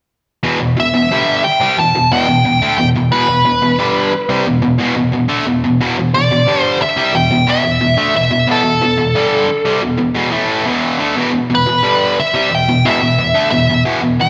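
A big arena sound wrapped in wet recital-hall reverb frames this menacing, heavy rock excerpt, set at 90 BPM in a straight 4/4 on E minor with tuning slightly below standard pitch. A bright, double-tracked overdriven electric guitar picks a low riff up front from 0.4 s, holding on an E minor chord. At 0.8 s, a nasal, dark lead guitar with a parked wah and overdrive joins up front with a picked melody in a higher register, both parts continuing to 14.3 s.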